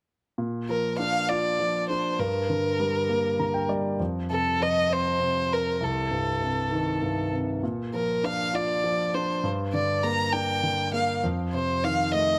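Tender and romantic, this short cut from a longer six-eight pop ballad sets a bowed solo violin melody, smooth, even and close with vibrato, over concert grand piano accompaniment. The intimate, polished piano sits up front with deep bass, long sustain and audible action noise, and adds a brief fill at 3.1 seconds after the violin enters at 0.7 seconds. Light reverb surrounds the pair.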